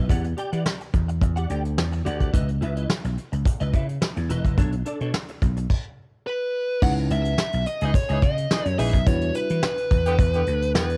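Heard as a small-room home recording on cassette, this late-night, danceable slice of early-eighties boogie funk moves at 107 BPM in 4/4, cut from a longer piece. A bright, growly slap bass and a brushed drum kit with a punchy kick and dark cymbals sit up front, while a clean, compressed electric guitar riff with ensemble chorus runs until 5.6 seconds, just before a stop at 5.7 seconds. A fuzz-distorted lead guitar then carries the melody, joined by a worn, slightly out-of-tune tine electric piano with analog chorus and a vintage horn section with light vibrato on a second line, over C#m9 and Em9 chords.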